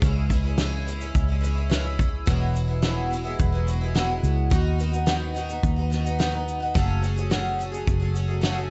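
Tender and wistful, this short acoustic pop excerpt in C# minor moves at 107 BPM in a straight 4/4, cycling through C#m, Eadd9, B/D# and F#madd9. A double-tracked, picked twelve-string acoustic guitar gives a shimmering, octave-doubled accompaniment over a round, foam-muted vintage electric bass that sits up front, while a loose indie drum kit with a punchy kick, fat snare, shaker and a rolled-off top keeps time and a jingly tambourine sits very quietly beneath. The studio reverb and dark production keep the sound warm, with nothing above 8.0 kHz.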